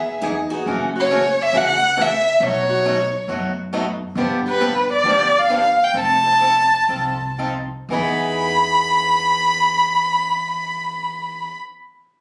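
Acoustic string swing in the jazz manouche style, this charming, playful passage from a longer piece features an expressive bowed violin up front, singing the melody with vibrato, a soft attack and portamento over a woody, dark pizzicato upright bass on gut strings. A bright parlour steel-string guitar adds a brief second line only through 0.6 s, while a boxy picked swing-style acoustic guitar with fresh strings carries the accompaniment from 0.2 s. The music slows down before the second section begins at 7.9 s, heard from a phone in the room with moderate club reverb.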